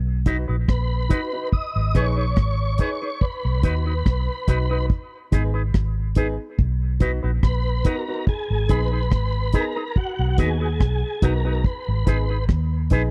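A dark, round, foam-muted fingered electric bass opens, soon joined by a deep, dry reggae drum kit that sits up front with a tight kick, rim click and hi-hat. Together they carry this sunny, uplifting roots reggae excerpt in B major at 71 BPM, where the chords alternate between B and G#m. A smooth tonewheel organ with chorus vibrato, fast rotary speaker and dub echo carries the melody from 0.7 s, while a bright, twangy electric guitar through an envelope filter and dub echo plays accompaniment. A boxy grand piano adds stabs, all within a close small-room 1970s-style studio sound.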